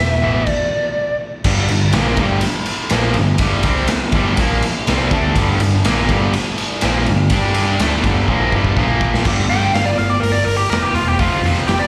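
A biting, overdriven lead guitar sits up front with slapback echo and analog delay, flashing briefly at the start and then returning around 9.5 seconds for the solo that closes this cut from a longer hard rock piece. Underneath, two bright, picked electric guitars drive the riff at 123 BPM in a straight 4/4, one distorted and the other overdriven and set further back, both touched with slapback echo. A growly, punchy picked bass runs the full length, while a raw garage drum kit with a gritty, saturated sound in a pumping stone room sits up front with punchy kick, medium-tuned snare, hi-hat, ride and crash. An opening stop gives way to a drum fill at 8.3 seconds. A very quiet, shimmering pulse-width pad with chorus holds mellow sustained chords through the middle over a progression moving through E5, G5, Bb5 and F5. The energetic, powerful sound comes across like a live club gig heard through the PA, with light reverb and small room ambience.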